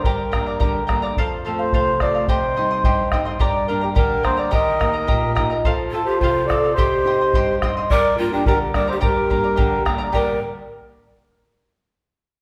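Melancholic yet festive, this Andean folk piece in 2/4 carries a straight, steady pulse through a short cut from a longer work. A mellow, reedy accordion leads the melody, its round single-reed tone sitting at the front alongside a deep, dark bombo that sounds close and up front. A bright, shimmering charango with double strings and a small, fingerpicked nylon-string guitar supply the accompaniment beneath. At 4.5 seconds, breathy, hollow large cane pan pipes enter with a second line, showing vibrato, tongued attacks and a touch of chiff. The band plays live in one room, bathed in a wet, spacious studio reverb, while the minor-key chords move from Gm through F and Cm back to Gm, then on through Eb, F and Cm before returning to Gm.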